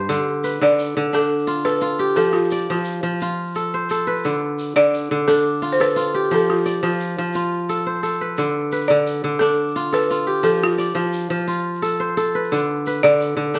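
A bright, ringing kora sits up front from the very start, its crisp fingerpicked arpeggios spanning a low G2 up to D5 in this flowing, joyful piece of West African traditional string and xylophone music. At 116 BPM in a straight 12/8, a woody balafon played with rubber mallets enters at 0.6 seconds, carrying the melody between F4 and D5 with a dry, buzzing tone. A grainy, mellow tube shaker sits far back, sounding distant, as if heard across a large room. The harmony rocks steadily between D minor and F throughout. The trio plays live together in one room, wrapped in a wet studio reverb, and the passage is cut from a longer performance.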